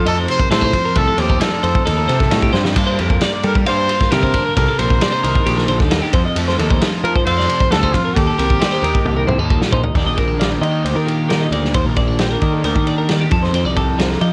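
A clear, distant trumpet with light vibrato carries the pop-style melody until 9.5 seconds in this playful, bright math rock and midwest emo excerpt at 134 BPM in Eb lydian, moving through chords from F7 and Gm7 to Ebmaj7 and F9. Two twelve-string electric guitars play throughout: a twangy one comps through a phaser while a warm one picks arpeggios in the background, over a growly fuzz bass with overdrive. A loose, punchy indie drum kit with dark cymbals sits up front and plays a fill at 2.5 seconds, and the whole recording has light reverb and a worn, warbling cassette-tape pitch drift.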